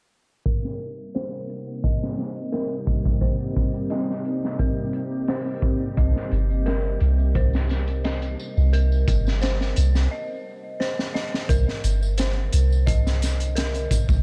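A crunchy breakbeat kit sets a straight, hypnotic trip hop groove, its punchy kick and high-tuned snare sitting up front with a gritty, saturated edge and a rolled-off top. Over it, a vintage string machine of cellos holds full-bodied sustained chords on a C minor seventh, softened by ensemble chorus, while an eerie, inharmonic FM bell spins mellow arpeggios through chorus, delay and a low-pass filter, both parts moving under filter sweeps. From 2.1 seconds a very quiet bowed-like drone adds a tense, string-like texture with vibrato and its own reverb. The strings drop away at 10.1 seconds as the track breaks, and a drum fill leads into the next section at 11.5 seconds. A deep, round 808-style bass, warmed by tube saturation, has already arrived up front by then, joined by a compressed tambourine in the background, giving this cinematic fragment of a longer piece a dark, weighty close under light reverb.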